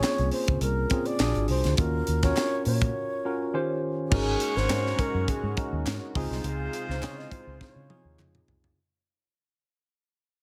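A polished, lightly reverberant small-room sound frames this upbeat, urban 1980s jazz-funk pop excerpt, where a bright, reedy alto flute carries the melody over a worn, slightly out-of-tune tine electric piano with lush chorus, a tight funk drum kit with a high-tuned snare, very quiet crisp handclaps and a dark, round, foam-muted fingered bass, before a distant, roomy horn section and a soft sawtooth pad in the background join at 4.1 s as the music fades out, with a drum fill arriving at 7.6 s.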